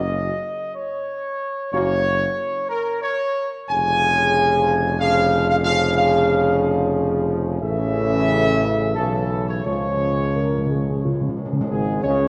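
Regal and solemn, this classical brass excerpt moves at 91 BPM in a stately 3/4 in D-flat major, with a dark, tight trumpet section carrying the melody up front over sustained chords from a mellow French horn section and a bright trombone section with light vibrato that enters at 1.7 seconds, a punchy tuba anchoring the bass, and round, soft-mallet timpani on calf heads adding a fill from 9.7 seconds, all heard through the reverb of a scoring stage and the warbling pitch drift of worn cassette tape.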